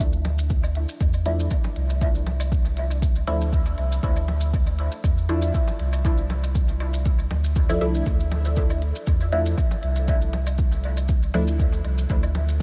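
Dub techno with a hypnotic, deep mood and a light swing, built on a round, soft sub bass that pumps to the sidechain beneath an up-front kick, smooth electronic hats, grainy close maracas and background congas and woodblock trailing dub echo, while a muted, detuned sawtooth chord stab enters at 1.3 seconds, dark and evolving through a phaser and a moving notch before dropping out at 11.5 seconds.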